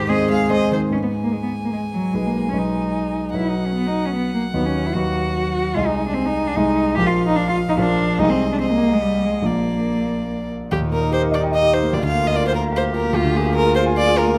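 In a quick, straight three-beat metre, this spirited and graceful classical-period movement for piano trio unfolds as a short passage cut from a longer piece. The violin carries the melody with a rich, smooth and even bowed tone, touched by light vibrato and heard close. Beneath it, the cello plays a second line that sits up front, its rich bowed sound focused with a smooth top and vibrato. The concert grand piano provides the accompaniment, warm, natural and present, reaching down into deep bass and standing as the loudest of the three. An opening section begins at 0.9 seconds, moving through minor and major harmonies, and a second section arrives at 10.7 seconds, settling on a Bb7/D chord. The close, detailed recording places the players in a light reverb.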